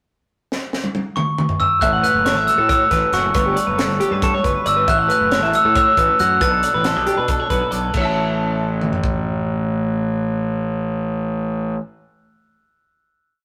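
Math rock and midwest emo piece in A mixolydian, intricate and wistful, racing at 274 BPM in 7/8, where a crisp fusion drum kit with a high-tuned snare and punchy kick opens with a fill at 0.5 seconds before a fuzzed, growly fingered electric bass, two bright, twangy twelve-string electric guitars (one picking a clean ostinato, the other playing syncopated fingerstyle arpeggios through harmonic tremolo in the background) and an up-front, bell-like glockenspiel struck with brass mallets carrying motif-based song phrases move through A6, Gmaj9#11 and Bm7 to a closing A6 chord at 7.9 seconds, all captured in a rough rehearsal-room recording with tube saturation and light reverb.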